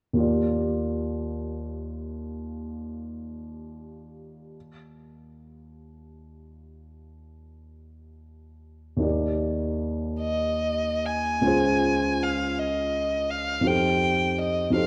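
Impressionist classical for violin and baby grand piano, luminous and dreamy in a slow rubato, opens on the piano alone with dark, mellow chords of long sustain before the rich, vibrato-laden violin enters at 10.2 seconds with a smooth, bowed melody, both up front in a concert hall reverb that lends the cut-off passage a dark, warm glow.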